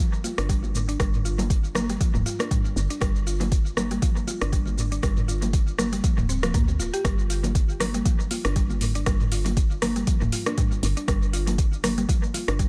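Afro house at 119 BPM with a light 16th-note swing, this hypnotic, spiritual excerpt sits in G minor pentatonic over a single G7 chord with its third omitted, cut from a longer piece. A mellow, mallet-like synth pluck with chorus, sidechain pumping and dub echo plays arpeggios from the start. It is joined by an overdriven afro-pop kit with metallic hats, rim clicks, shaker and toms, soft-handed vintage congas in the background, and a round, dark FM bass that pumps beneath it all. The deep, overdriven electronic kick arrives at 0.5 seconds and sits up front in an echo-heavy digital ambience.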